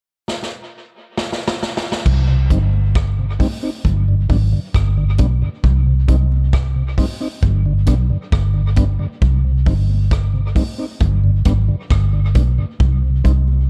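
In a straight 4/4 at a relaxed 67 BPM, this meditative, hypnotic roots reggae excerpt opens with a drum fill at 0.3 seconds from a vintage kit, whose punchy kick, medium-tuned snare, rim click, hi-hat and crash cymbal sound natural and up front in a small room. At 2.1 seconds a dark, round, foam-muted electric bass enters up front alongside very quiet, distant congas with a bright, high-tuned skin. A soft, flute-like tonewheel organ turns through a slow rotary speaker as the harmony moves from a C power chord into an alternation of G and C minor in C harmonic minor, all set in an echo-heavy mix.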